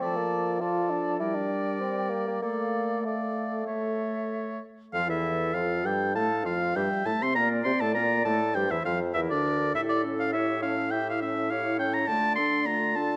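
Heard through a moderate recital-hall reverb, this restless, urgent excerpt from a quick classical-period wind quintet movement in a rubato 4/4 puts a close-miked oboe with a clear, vibrato-laden tone up front on the second line, while a distant, hollow silver flute carries the melody in the background, a smooth-topped clarinet and a mellow French horn supply the accompaniment, and a soft-attacked bassoon holds the bass.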